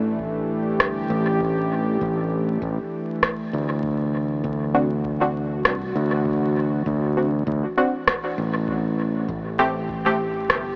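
Vinyl crackle and a small-speaker tone, lightly reverberant, color this deep, spacious ambient dub excerpt at 99 BPM with a gently swung 16th-note feel, moving from A5 to D7 and on to Am7. A smooth, detuned sawtooth pad holds sustained chords under a growly, overdriven fingered electric bass that sits up front, while a dry, deep electronic kick stays in the background and a tape-toned rim click, entering at 0.8 s, trails dub echo. From 4.7 s a muted, detuned chord stab with a filter pluck, fast attack and short decay arrives up front, its chorus and dub echo adding to the sense of space.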